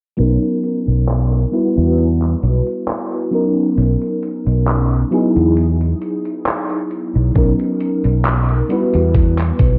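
Vaporwave at a slow 67 BPM in B major, nostalgic and dreamy, where a lush, warbling FM electric piano with a soft pad layer, drenched in ensemble chorus and tape echo, drifts over Bmaj9, Emadd9 and Emaj9 chords beside a dark, round fretless electric bass with chorus, while a detuned 8-bit drum machine taps lightly swung handclaps and hi-hat through gated reverb until a thumpy electronic kick drum arrives up front at 7.4 seconds, all under cassette tape haze, a filter sweep and light reverb in this brief cut from a longer piece.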